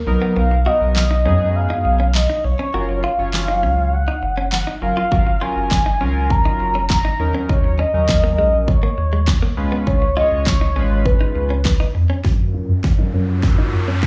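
A mellow, horn-like synth lead carries the melody with a round, soft-attack sawtooth tone, colored by vibrato, chorus, phaser, tape echo and slapback echo, before it drops out at 11.9 seconds. This summery, upbeat dance-pop piece in F# major moves at 101 BPM in a straight 4/4, with chords cycling through Bmaj7, F#maj7, D#m7 and C#7. Beneath it, a clean, direct-recorded electric guitar plays a picked, compressed riff, while a glossy, retro polysynth of detuned, evolving pulse and sawtooth waves fills out the accompaniment with sidechain pumping and a low-pass filter. A deep sine sub bass, also pumping, sits up front alongside a layered electronic drum kit with a punchy kick, a fat snare and handclaps. From 12.2 seconds a build-up brings a drum fill and a filter sweep, and an electronic riser joins at 12.8 seconds. The whole thing sounds like a live gig heard through a venue's PA, with a touch of club reverb, and it is cut from a longer piece.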